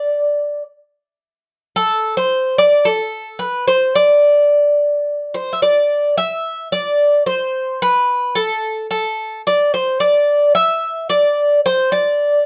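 Greek folk at 110 BPM in a straight 4/4, this bittersweet, cool passage, cut from a longer piece, features a solo acoustic bouzouki tuned to A4 = 438 Hz, picked on double strings with some octave-doubled courses and sitting up front in the mix. Its bright, metallic tone stays between A4 and E5, with a new section arriving at 6.2 s and running to 12.5 s. A wet studio reverb with a short 0.5 s decay frames the instrument in a dark, warm production.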